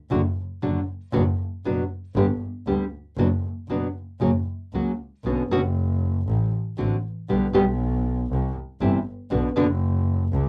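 A short home recording on cassette, set in a moderate booth ambience, opens this brief cut from a longer tango in B minor, taken at 118 BPM in 4/4 with a loose, rubato feel. The mood is playful and elegant. A nylon-string guitar sits up front in a classical, fingerpicked style, its dark, full-bodied tone carrying a cassette-tape coloring and the occasional finger squeak. Beside it, a single bowed double bass sings with a rich, expressive voice, soft attacks, vibrato and portamento, placed up front in its low register. The guitar stops at 9.7 seconds, leaving the bass to finish alone until 10.5 seconds, as the harmony moves from D/F# through Bmadd9, D7/A and C before settling on Bm.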